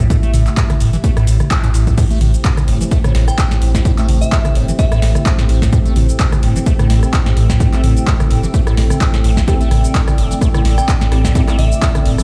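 This acid house piece has a raw, gritty mood and a swung 4/4 groove. A squelchy, resonant square-wave acid bass riff with phaser and overdrive runs throughout, under a dark, detuned sawtooth pad whose sustained chords pump against the sidechain. A punchy electronic kick, re-recorded in a large room, sits up front, while a booming analog drum machine adds crisp snare, metallic hi-hats, handclaps, rim clicks, shaker, toms and crash cymbal, and a round sine sub bass with tube saturation enters at 0.3 seconds. After a band accent, the drop arrives at 2.0 seconds, and a warbling, lo-fi tape-like pad drifts in the background from 2.6 seconds. A crystalline FM synth bell plays brief melodic phrases with tape echo, and near the end a muted, filtered dub chord stab with phaser and 12-bit sampler grit appears. The whole mix sounds as if it was played on a big sound system in a bare stone room.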